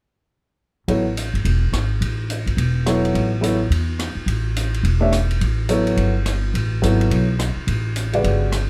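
A swung eighth-note feel drives this searching, hypnotic modal jazz fragment, cut from a longer piece, as an intimate concert grand piano with deep bass and audible action noise accompanies up front beside a woody, plucked upright bass, while a quieter, natural-sounding drum kit sits behind them with hi-hat, ride cymbal and rim clicks, the harmony moving from A to G at 5.4 seconds in a dry, closely miked, detailed sound.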